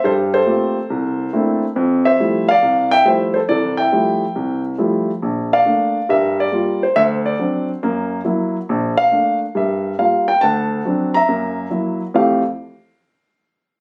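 The rhythm swings its eighth notes over a brisk 4/4 at 139 BPM, giving this short fragment of a longer solo jazz piece a playful, warm lilt. A single grand piano carries everything, its warm tone and short sustain placed up front, ranging from deep Bb1 in the bass to bright Bb5 at the top. In F major, the opening moves through Gm11, C13 and Fmaj9 before a new passage arrives at 5.2 seconds, cycling twice through Bbmaj7, Gm7, D7 and Gb7 for a touch of colourful chromatic tension. The harmony settles back onto Fmaj9 at 12.1 seconds as the piano winds down shortly after. Captured on a phone in the room, the sound carries moderate club-style reverb and compression.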